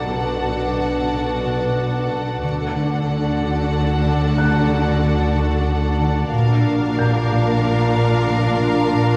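This cinematic suspense film score moves at 92 BPM in 3/4, with an ominous, tense mood across this short cut from a longer piece. A clear, focused violin section carries the melody with vibrato, while a second violin section with a smooth top plays a supporting line further back, and a lush viola section holds accompaniment on D4. Beneath them, a distant double bass section and an expressive cello section with portamento share the bass, and a mellow concert harp rings out a fingerpicked riff in the background. A shimmering, ethereal pad with chorus and its own reverb sustains detuned, warbling chords with an octave-up shimmer, and a felt-muted upright piano adds very quiet, intimate high notes with audible action noise. The harmony moves from Bm7 to D at 2.4 seconds and to A# at 6.3 seconds, all set in a scoring-stage reverb heard from further back in the room, with a layer of vinyl crackle.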